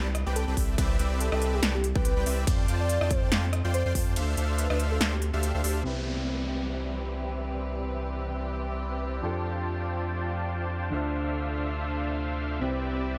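A half-time groove with lightly swung sixteenths drives this euphoric, lush future bass passage, cut from a longer piece. A huge, detuned supersaw riff pumps against the sidechain over a deep, saturated sub bass sitting up front. The drop opens with a punchy, tape-toned electronic kick and an overdriven big-room kit of crisp hats, ride, rim clicks and snare, re-recorded in a large room, while a velvety, wave-folded synth lead with chorus, vibrato, tape echo and 12-bit sampler grit carries the melody in the background. The kick falls away at 4.2 seconds, and around 5.8 seconds the kit and lead give way to an intimate concert grand piano with audible action noise, joined at 5.9 seconds by a distant, earthy chamber string section holding bowed chords and an electronic downlifter, as a filter sweep works on the supersaw. The lead returns briefly at the end over a chord progression that cycles back to its opening harmony, all set in light reverb.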